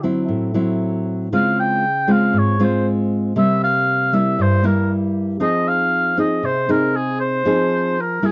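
A mellow oboe carries the melody in this short, smooth and wistful bossa nova fragment, entering at 1.3 seconds with a light vibrato and a classical poise, its tone set forward yet carrying a roomy, faintly distant air. Beneath it, a nylon-string guitar plays fingerpicked accompaniment from the very start, its acoustic, warm voice sitting up front in a classical manner. The pulse is a straight 4/4 at 117 BPM in F minor, tuned slightly high with A at 441 Hz. The harmony moves from D9 through Dbmaj7 and C7 before settling on Fm7 at 5.4 seconds. The sound is a dry, close 1970s-style studio recording touched with light reverb, cut from a longer piece.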